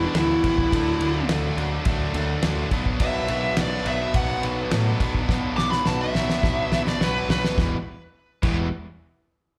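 Gritty and driving, this classic rock clip, cut from a longer piece and heard as a live club gig through the venue's PA, opens with a dark, smooth lead guitar soloing up front with overdrive and slapback echo until 7.6 seconds, moving through Em, Dadd9 and Bm. Beneath it, a bright cranked stack guitar with overdrive and slapback echo and a compressed overdriven guitar in the background play riffs, while a growling, overdriven picked bass holds the low end. A damped 70s drum kit with a fat snare, tight kick and dark cymbals plays throughout and adds a fill from 5.3 seconds before the music returns to Em.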